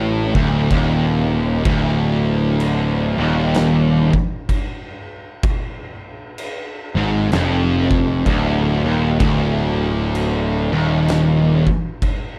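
A slow, swung 64 BPM pulse in 4/4 drives this hypnotic, brooding stoner and doom metal excerpt in D phrygian on a Dm chord, with a bright, double-tracked overdriven guitar riff up front beside a growly, direct-amped fuzz bass, two thick distorted fuzz guitars playing riffs in the background, and an oversized low-tuned acoustic kit entering at 0.3 s with a boomy kick, fat snare and dark cymbals in a gritty, saturated, pumping big room, while the mix itself carries little reverb.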